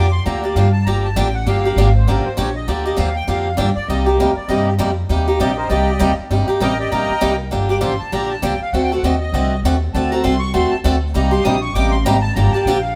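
A reedy, sweet accordion with light tremolo tuning takes a virtuosic solo over a bright, boxy picked acoustic guitar and a woody, thumpy pizzicato upright bass, both up front, in this bittersweet G minor jazz manouche excerpt at 198 BPM with a swung feel, moving from Gm9 through Cm9 and D7b9 and played live together in a moderately reverberant stone room.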